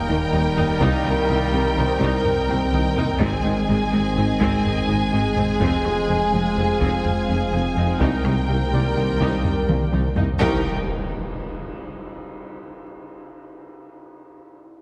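Cinematic hybrid orchestral and electronic film score in 5/4, brooding and vast, where lush vibrato violins carry a high melody over a second violin line, bright trombones, dark French horns and a warbling, lo-fi chorused pad hold sustained chords, a punchy sub bass, a rubbery square-wave riff, a solo tuba, cellos and double basses anchor a deep low end, a faint vintage grand piano, portamento violas and a squelchy, phaser-tinged blip pluck arpeggio add texture, and quiet, dry taiko drums lead to a fill at 9.7 seconds before a huge, up-front impact lands at 10.4 seconds, the whole mix heavily compressed and radio-like in a reverberant scoring-stage space.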